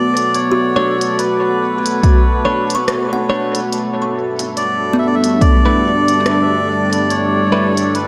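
A punchy, overdriven electronic kick thumps up front from 2.0 to 5.6 s in this deep, meditative ambient dub excerpt, beneath a reedy, breathy melodica melody with tape echo, a moody sawtooth pad holding chorused Bm9 and G69 chords, woody kalimba arpeggios in the background, crisp swung hi-hat and rim clicks from a room-recorded electronic kit, twangy clean guitar stabs through dub echo, and a glassy drifting-harmonics texture, set inside a huge ambient reverb.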